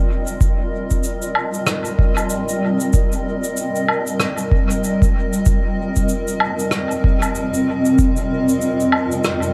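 Hazy and meditative, this short ambient dub excerpt at 95 BPM in 4/4 with a lilting 16th-note swing sets a blurred, wave-folded granular cloud pad sustaining Fsus2 and then F9sus4 at 5.5 seconds up front with its own reverb, while distant, roomy cabasa, woodblock and rim click drift through dub echo and a deep, overdriven analog electronic kick sits close until 8.1 seconds, all in a dark production with light small-room ambience.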